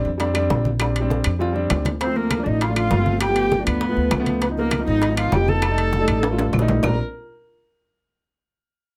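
A brisk, straight 4/4 pulse at 199 BPM drives this sunny, sophisticated Afro-Cuban jazz excerpt in Bb major. An up-front pizzicato upright bass with a woody, thumpy steel-string tone anchors the groove beside a warm concert grand piano that adds natural, deep-bodied accompaniment. Around them sits the percussion: compressed, saturated low-tuned congas with a damped skin, tight high-tuned bongos and woody claves in the background, and ringing metal-shell timbales heard close and dry. A drum fill at 1.4 seconds leads to 2.0 seconds, where a single bowed viola takes the melody with a dark, expressive voice full of vibrato and portamento, and a breathy, bright concert flute enters with a tongued, straight-toned, slightly unsteady second line. The harmony moves through Dm7, G7, Db9 and F9, and a second fill at 6.2 seconds returns it to Bb6, all captured with close, detailed microphones and light reverb.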